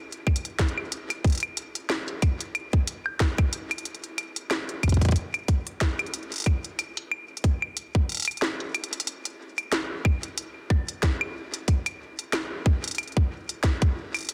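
Intricate and cerebral, this short IDM passage, cut from a longer piece, moves at 92 BPM in 4/4 with a 56% swing on the sixteenths. An industrial drum kit of claves, hi-hat and snare runs from 0.1 to 14.3 seconds, its clanging snare set against smooth hats and trailed by delay. Joining it, a tight electronic kick drum, pushed into overdrive, enters at 0.3 seconds and sits up front alongside the kit, both parts re-recorded in a large room. The kick drops out briefly as a drum fill closes the opening section at 9.1 seconds, leading into a new passage. Light reverb surrounds a dense, heavily limited modern master.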